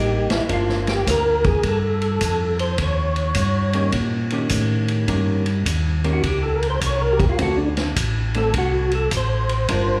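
A percussive, round tonewheel organ sings the melody in G minor over a mellow tonewheel organ bass line and a dark, compressed hollow-body guitar, both organs shimmering with chorus vibrato and a slow rotary speaker, before a vintage drum kit with a punchy kick and shadowy cymbals enters at 0.3 seconds, carrying this soulful, late-night soul jazz organ trio groove at 104 BPM with a lilting swing through Gm7, Eb7 and D7 in a reverberant recital hall, in a passage cut from a longer piece.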